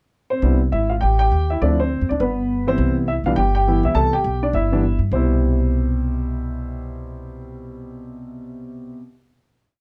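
A playful swing jazz piece in C major at 205 BPM opens with an upright piano pickup at 0.3 s. Its natural, long-sustaining tone carries a motif-based melody of song-like phrases, partly doubled in octaves, over syncopated comping in rootless voicings. A woody pizzicato upright bass with steel strings joins at 0.4 s in a two-feel, and both sit up front as the harmony moves through Cmaj7, Dm7 and G before settling on a final chord at 5.1 s, with light reverb and a dark, warm production.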